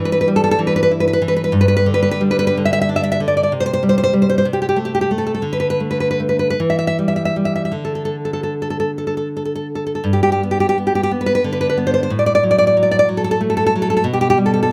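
Tender and sunny, this short excerpt from a romantic classical guitar piece in G major unfolds in a rubato 6/8 at around 50-66 BPM, with a single warm, fingerpicked nylon-string guitar placed up front and caught by close, detailed microphones in light reverb, moving through its chord changes before a second section opens at 10.0 seconds.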